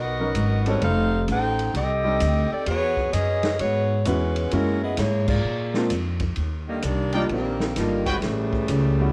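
A swung 4/4 pulse at 130 BPM drives this brassy, energetic big band swing passage, cut from a longer piece. Up front, a mellow saxophone section carries the melody with a soft attack, light vibrato and a smooth top, while a woody pizzicato upright bass on steel strings anchors the low end. A clear baby grand piano with short sustain fills in the harmony over extended chords, and a vintage drum kit of crash, hi-hat, ride, snare and kick sounds natural and small-roomed, with a punchy kick, medium-tuned snare and a rolled-off top. The full band lands an accent at 5.2 seconds, and a tight, present trumpet section, warm with light vibrato, adds stabs from 7.1 to 8.2 seconds. A moderate large studio reverb surrounds the ensemble, and the worn, warbling cassette tape lends the whole sound a warbly pitch drift.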